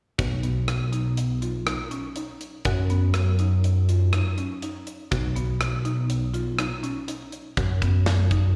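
This sounds like a live gig heard through the venue's PA, with light reverb, a small-room ambience and the reverb of a recital hall. It is a short, driving and bright passage of progressive instrumental band music in 5/4 at 122 BPM, with a straight feel in B lydian, cut from a longer piece. A chorused synth bass sits up front from 0.2 seconds to 8.6 seconds, playing between B1 and F#2 with a glossy, retro tone that blends pulse and sawtooth waves with a plucky filter and sustained, mellow notes. A buzzing marimba struck with medium mallets plays arpeggios between B3 and F#4; its woody hardwood bars are close-miked and dry, sit lower in the mix, and carry a slapback echo. A tight acoustic metal drum kit keeps hi-hat, kick, rim click and a medium-tuned snare mid-forward until 8.4 seconds. The whole passage rests on a B chord.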